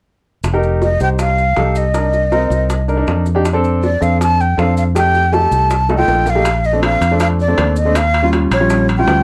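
Danceable and lively, this short cut from a longer Afro-Cuban jazz piece moves at 160 BPM in a straight 4/4, tuned slightly low to A4 = 436 Hz. Fingered electric bass, dark and round up front, enters at 0.4 seconds alongside low-tuned bongos played with soft hands and grainy, mellow maracas, both sitting in the background. A baby grand piano with a natural, short-sustained tone supplies the accompaniment, while a breathy metal jazz flute, expressive with vibrato, a soft attack and lifted highs, carries the melody up front from 0.8 seconds. The harmony moves through F7sus4, Cm7, F6 and F9, then a drum fill leads into a second section at 6.5 seconds, where ringing metal-shell timbales join over Bbmaj9 and Eb9. A moderate club reverb frames the band, and worn, warbling cassette tape gives the sound a warbly pitch drift.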